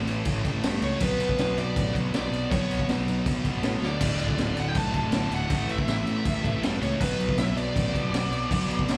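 A raw garage drum kit, gritty and saturated with a punchy kick, high-tuned snare and crash cymbal, sits up front in this rowdy, upbeat punk rock clip at 160 BPM, alongside a growly fuzz picked electric bass and two bright picked guitars, one crunchy and overdriven and one tight and distorted, riffing in the background with slapback echo over A, Bm, D5 and A5, while a dark, biting lead guitar enters at 0.8 seconds with overdrive, slapback echo and delay, a drum fill lands at 3.8 seconds, and the band sounds like a live gig heard through a club's PA.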